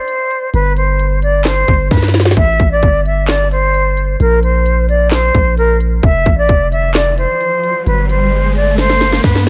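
A hip hop and trap excerpt with an eerie, dark mood, moving in a half-time feel. An airy, distant concert flute carries the melody from the start, its expressive vibrato and tongued phrasing softened by a low-pass filter and delay. A produced trap drum kit enters almost at once with a hard-clipped kick, sharp snare, crisp hi-hats and handclaps, breaking into fills around 1.9 seconds and again at the close. A long, deep 808-style bass with a sine tone and mellow decay arrives at 0.5 seconds, sitting up front with the drums beneath chords that shift from Gadd11 through Am7, Bbsus2 and F5 before returning to Gadd11. An electronic riser joins at 6.7 seconds and builds tension into the cut-off, all set in a digital ambience.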